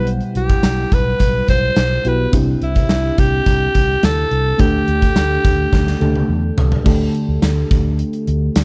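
A raspy, close-miked alto saxophone carries a gritty pop melody through tape echo from the start, over a mellow FM electric piano shimmering with chorus and a dark, round fretless bass, in this glossy, uplifting excerpt of 1980s-style pop. A gated drum kit arrives at 0.1 seconds, up front with a punchy kick, bright cymbals, hi-hat, tambourine and toms in an airy stone room, and it breaks into a fill from 5.7 seconds. The saxophone drops out at 6.3 seconds, and at 6.9 seconds the piano, bass and drums move into a new section, all set in a small room ambience.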